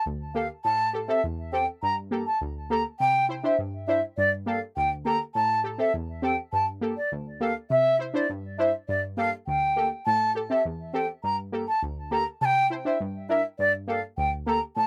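Tough and sultry, this dancehall excerpt moves at 102 BPM in a straight 4/4 in G dorian, cycling through Gmadd9, Am7 and Cadd9. An airy wooden flute with vibrato and a soft attack carries the melody through a digital delay, while punchy, detuned sawtooth brass stabs with a plucked filter and chorus supply the accompaniment from 0.1 seconds. Both parts sit up front in a booth with moderate ambience.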